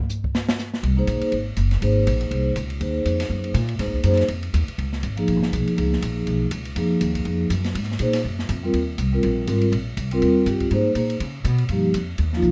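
Relaxed and warm, this small-group swing and bop fragment opens with an open jazz drum kit alone, its dark cymbals, medium-tuned snare and boomy kick sounding smooth in a small room. A woody, thumpy pizzicato upright bass with steel strings joins up front at 0.8 seconds, and a mellow, ringing vibraphone played with soft mallets and a slow motor vibrato follows at 1.0 seconds to comp through lush extended chords. Light reverb gently surrounds the swinging groove.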